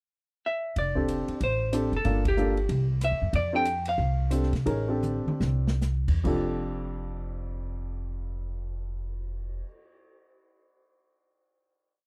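A clean, hollow-body electric guitar carries a short, motif-based melody in period phrases from 0.5 seconds to 5.8 seconds, opening this brief, playful small-group swing and bop piece in F major at 131-188 BPM with a relaxed swing. Growly pizzicato upright bass plays in a two-feel, a woody upright piano adds syncopated, short-sustain comping in rootless voicings, and an airy acoustic drum kit with dark cymbals and a boomy kick keeps a stick ride pattern, playing a fill at 5.0 seconds as the band slows before settling on a final chord at 6.2 seconds. The sound is dry and close, in the manner of a 1970s studio, with a band accent early on.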